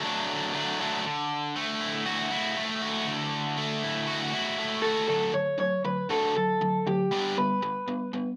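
A bright, overdriven electric guitar opens this short rock passage, its picked riff double-tracked and placed up front as it sits between D3 and F#4 in a straight 4/4 groove. The mood is jangly and carefree, with the harmony moving from D to Dadd9 at 1.0 seconds and back to D before shifting to G near the close. At 4.8 seconds a second electric guitar joins with a melody, its dark, slightly broken-up tone coming through a small old amp and colored by a phaser. This lo-fi lead stays up front alongside the riff, ranging from G4 to C#5, and both guitars play on until the cut at 8.4 seconds. A moderate studio reverb gives the pair a touch of room around them, and the clip feels lifted from a longer piece.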